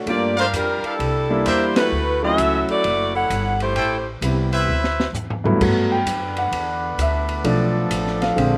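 Joyful and energetic, this short big band swing passage is cut from a longer piece and rides a lilting swung feel. A bright saxophone section carries the melody with light vibrato, while a brilliant trumpet section punches in with stabs, both up front and touched by a slapback echo. A clear concert grand piano with deep bass and long sustain comps beneath them, also treated with slapback. A woody, plucked upright bass on gut strings and an open jazz drum kit, dark with a boomy kick and a high-tuned snare, drive the groove. The band hits an accent at 1.7 seconds, the drums play a fill from 4.7 seconds, and at 5.6 seconds the piano takes a solo over sustained chords from a nasal, straight-muted trombone section with a soft attack. The sound is dry, with little reverb and an outdoor openness.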